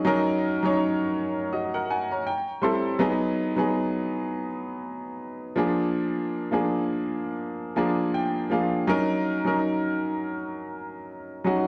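Smooth and silky, this short soul excerpt moves at 82 BPM in 4/4 with a gentle swing on the sixteenths, tuned to A4 = 442 Hz. A solo grand piano, clear and worn yet natural and up front with a slapback echo, plays the whole passage over chords such as D#m7, G#m7 and A#7, adding fills at 1.5 and 7.4 seconds. A moderate plate reverb gives the room a lingering tail.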